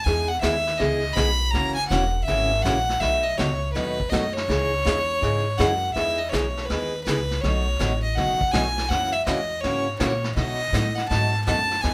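A brisk 163 BPM swing in 4/4 drives this cheerful western swing excerpt, where a clear, earthy bowed fiddle with light vibrato carries the melody up front over a woody, thumpy pizzicato upright bass, a bright picked steel-string acoustic guitar, and a vintage brush kit with a tight kick and rolled-off top, all captured as a band playing live in one small, reverberant room while the chords move from Emaj7 through F#7, B7 and C#madd9.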